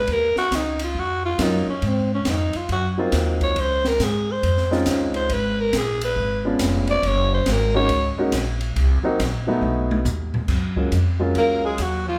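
Smoky and swinging, this small-group jazz fragment opens with a raspy, growling alto saxophone soloing up front over woody pizzicato upright bass, a dark-cymballed drum kit with a high-tuned snare and boomy kick that plays a fill at 9.6 seconds, and warm grand piano entering at 1.4 seconds, before a mellow, breathy tenor saxophone with scooped notes joins the alto at 11.4 seconds, all in a live room with a moderate reverb.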